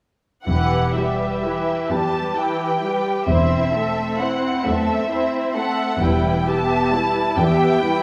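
Bathed in the wet reverb of a scoring stage, this solemn, elegiac fragment of a slow romantic movement for muted string orchestra unfolds in a rubato 6/8, with a veiled, con sordino violin melody up front over a second violin line, dark violas, lush cellos and distant double basses that fall away at 6.9 s, as the harmony moves from Em to Am/E and back to Em.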